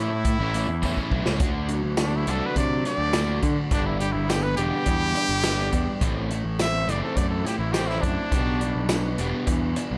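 Indie rock with a bittersweet, cool mood, this short cut from a longer piece rides a straight 4/4 groove under a brilliant trumpet that carries the melody up front, its punchy, present tone marked by vibrato and scooped notes in a pop style. After a brief opening in which a jingly tambourine sounds close but in the background and the drums play a fill from 0.8 seconds, the trumpet takes a solo at 1.4 seconds over chords moving from D to G, Am and back to G. Two overdriven electric guitars play riffs in the background, one dark and compressed, the other bright and coated in a lush chorus. A fuzz-laden electric bass sits up front, overdriven and warm, while a vintage acoustic drum kit with a punchy kick, medium-tuned snare, hi-hat and tambourine keeps time with a natural studio-room sound and a rolled-off top. Light reverb gives the mix a touch of space.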